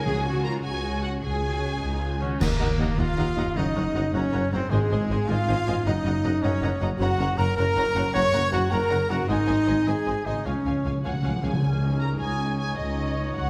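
A cinematic, heroic adventure film score in 6/8 at 104 BPM in Db major, this soaring, triumphant passage is cut from a longer piece. From the opening, dark, distant violins carry the lush, expressive melody over a second line from smoother, warmer violins, while woody violas and expressive cellos sit in the background and a rich, focused double bass section anchors the bass. A very quiet, ringing harp adds fingerpicked arpeggios throughout, and a cymbal swell with dark clash cymbals and concert bass drum opens the cue alongside a dry, articulate timpani hit. At 2.2 seconds the brass and winds arrive: mellow French horns hold tight sustained chords, a solo trumpet adds stabs, an airy, very quiet flute section takes up a second line, and a mellow tuba doubles the bass from 2.4 seconds, when a band accent marks the turn to an Ebm, Gb and Ab progression. A hard-mallet timpani fill from 10.5 to 11.6 seconds rides over a Db resolution and leads into a closing Dbsus2, all bathed in the generous reverb of a scoring stage.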